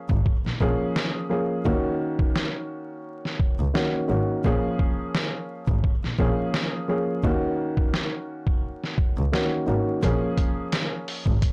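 Gritty and moody, this boom-bap hip-hop fragment cut from a longer piece sets a dark, woody upright piano, treated with cassette tape and plate reverb, over a close, bowed double bass with biting vibrato and an airy bow, while a pitched-down, muffled sampler-style kit with a thumpy kick and 12-bit grit pushes up front, all through an overdriven, blown-out recording with vinyl crackle as the harmony shifts between Bbm7 and Ebm7.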